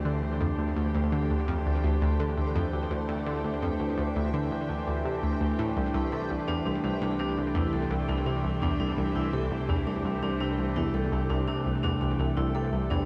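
Expansive and mysterious, this 13-second cut from a longer piece of ambient, sequencer-driven space music moves at 84 BPM in a straight 4/4, as a bright, up-front analog pluck riff with ring modulation and a filter sweep sits alongside a morphing wavetable pad with a moving notch, a fat, thick sawtooth bass and a resonant, bubbling stepped-filter texture that fades in from the background. At 5.9 seconds a metallic vibraphone played with hard mallets enters with ringing arpeggios, its motor vibrato and delay set in a boxy small room. The dark production sits in a wet scoring-stage reverb as the harmony shifts from D7, its third omitted, to C at 5.8 seconds.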